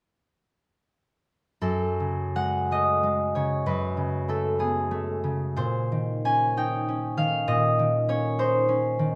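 Classical solo harp in F# dorian, wistful and mysterious, this brief fragment of a longer piece has a concert harp playing alone from 1.6 to 9.2 seconds in a rubato 6/8 at roughly 53-67 BPM. Its ringing, fingerpicked tones span F#2 to G#5 and sit up front in a recital hall with moderate reverb as the harmony drifts from F#madd9 through Amaj9/F# to A#m11.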